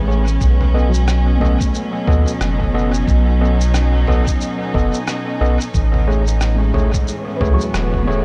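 A deep, round analog bass sits up front throughout this hazy, spacious ambient dub excerpt at 90 BPM, its dark sine-like tone carrying a filter sweep beneath a swung 4/4 groove in B mixolydian that moves from B7 to Amaj7 at 5.7 seconds. Veiled, con sordino strings hold bowed ensemble chords with vibrato, while a soft felt-muted upright piano, heavy with audible action noise and 12-bit sampler grit, arpeggiates in the background through dub echo, and an overdriven tine electric piano adds gritty, amp-coloured stabs with echo of its own. A muffled, pitched-down sampler kit of rim click, shaker and toms, sent into echo and studio ambience, is joined by a compressed, thumpy, tape-warm electronic kick, all bathed in a generous digital ambience.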